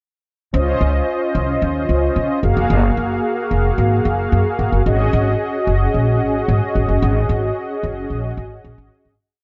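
Slick and funky, this short early-eighties boogie funk piece moves at 111 BPM in a straight 4/4, with mellow synth brass holding detuned, sawtooth-edged chords through a Dbmaj9, Gbmaj9 and Ab7sus4 progression, colored by chorus, vibrato and a filter sweep. Up front beside it, a woody, thumpy pizzicato upright bass on gut strings drives a fat, syncopated boogie line. Light reverb and small-room ambience surround the parts, the sound stays below 7.5 kHz, and everything fades out from 7.0 seconds until the close at 9.2 seconds.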